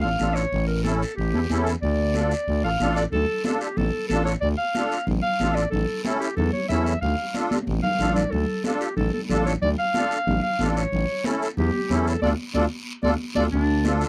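A straight 4/4 cumbia groove drives this passionate, fiery passage cut from a longer piece, with high-tuned, ringing congas played with soft hands sitting distant in a large room and a raspy guiro entering at 0.2 seconds. Up front, a clear, classical-style clarinet carries the solo melody with a soft attack and a roomy quality, while a shimmering, reedy musette accordion supplies the accompaniment and a thick, growling FM bass holds the low end with a fast attack and sustained notes. The dry, close 1970s-style studio sound with light reverb frames a drum fill at 7.5 seconds and a full-band accent from 12.2 seconds as the minor harmony cycles through its chords.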